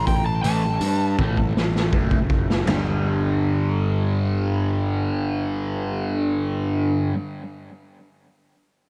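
A bright, double-tracked fuzz guitar drives this short psychedelic rock excerpt, its compressed, picked riff coloured by distortion, phaser and tape echo and held up front from 0.4 s to the close at 7.2 s. Opening the clip, an overdriven slide guitar played with fingerpicks sings a brief high melody soaked in tape echo and stops at 1.2 s. Beneath it, a fuzz-toned picked electric bass sits up front with direct-and-amped overdrive, while a raw garage drum kit with a boomy kick, medium-tuned snare, hi-hat, toms and china cymbal sounds gritty and saturated, its top rolled off. The drums play a fill that ends at 2.7 s, where the harmony moves from A5 to G5. At a steady 81 BPM in straight 4/4, the small-room ambience and echo-heavy mix make the mood hypnotic and kaleidoscopic.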